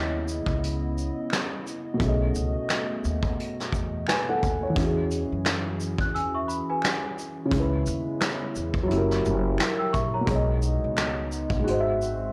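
Lo-fi hip hop with a nostalgic, mellow swing, cut from a longer piece, where a soft felt-muted upright piano with audible action noise and a vintage brush drum kit with a punchy kick sit up front alongside a woody pizzicato upright bass, while a dark, warbling tape-like pad hums in the background, very quiet finger snaps tick along, and a bell-like, slightly out-of-tune worn celesta adds a delicate second line through an analog delay from 6.0 to 10.5 seconds, all in a dry, gritty recording with light reverb.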